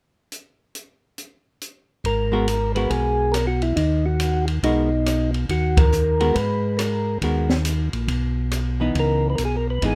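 A swinging 4/4 groove at 139 BPM sets this soulful, late-night soul jazz organ trio in G# minor in motion, with an open acoustic drum kit playing alone at first on dark cymbals, a high-tuned snare, boomy kick, hi-hat, ride and rim click, before a smooth tonewheel organ bass line through a slow rotary speaker enters at 2.0 seconds on G#m9, joined by a mellow, lightly overdriven percussive organ melody with key click and a clean hollow-body archtop guitar accompaniment, the band hitting an accent at 5.7 seconds and shifting to C#m9 at 9.0 seconds, all set in light reverb.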